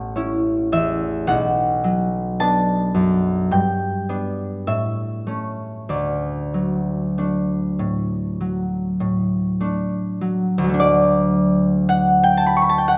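A moderate recital-hall reverb surrounds an up-front, ringing concert harp in this short, peaceful classical passage cut from a longer piece. Playing solo across its full 13.0 seconds, the fingerpicked harp moves with a serene rubato through a gentle progression from A and B minor to G, A7 and finally D. A new section begins at 10.8 seconds, and the harp's warm, acoustic tone spans from its deep low notes up into its bright upper register.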